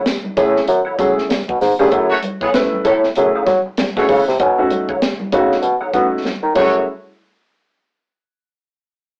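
A rough rehearsal-room recording with tube saturation and an AM-radio character, set in a small room with moderate reverb, gives this hypnotic, sly funk excerpt its gritty sound. A mellow bassoon carries the bass line up front, playing with light vibrato in a classical style, while a dark, woody upright piano adds short, vintage-sounding stabs. Further back, a clean, fingered electric guitar runs through a wah, and a tight acoustic drum kit with bright cymbals, a high-tuned snare and a tight kick drives a swung sixteenth-note feel. Ringing congas sit in the background, and a jingly tambourine plays only until 1.8 seconds. A roomy horn section enters at 2.1 seconds with a pop-style second line as the harmony moves from F#m7 to B9 and back, and a drum fill begins at 6.2 seconds.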